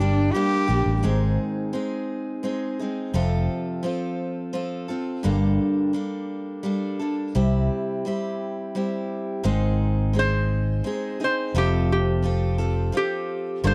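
A dry, close recording with a 1970s studio feel frames this reflective, intimate acoustic folk passage in 3/4 at 86 BPM, cut from a longer piece. A picked steel-string acoustic guitar and an amped, up-front fretless electric bass carry the accompaniment throughout, moving through chords such as Gm, Ab, F, Gmadd9 and C, while a warm cello bowed sul tasto with light vibrato and an airy, soft attack adds a second line that stops at 1.0 seconds. The lap resonator guitar, bright, metallic and nasal, played with fingerpicks and a steel bar, opens with a brief touch of melody and returns at 10.2 seconds for a slide solo that carries through to the close.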